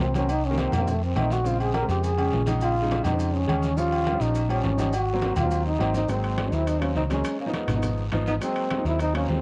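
Afro-Cuban jazz with a sunny, sophisticated mood, this short cut from a longer piece moves at a brisk straight-feel pace. A breathy trombone carries the melody up front, soloing through the first 6.1 seconds with a whispered, intimate tone, soft attacks, scooped notes and vibrato. Beneath it, a baby grand piano comps with natural, short-sustained chords over a round, dark hollow-body electric bass that sits forward in the mix, colored by tube saturation. The percussion bed blends very quiet, low-tuned congas, ringing, compressed metal-shell timbales with agogo bells, a raspy, close guiro and grainy maracas set far back in a large room. At 6.0 seconds a breathy tenor saxophone joins in the background with a soft subtone second line as the harmony settles toward Ab7. The whole recording carries light small-room reverb and the worn, warbling pitch drift of old cassette tape.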